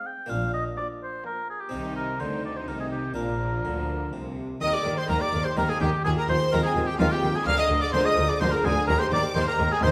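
A lively, brilliant passage from a baroque-style concerto movement in triple time opens with an up-front solo oboe with light vibrato sharing the melody with clear, focused violins. Behind them sit a second violin line, a rich viola section and an airy, round harpsichord, with bowed cello and double bass entering at 0.3 s to lay down a lush bass. The strings all play with vibrato, and a wet recital-hall reverb gives the brief cut its bright, spacious glow as it moves into a new section at 4.6 s.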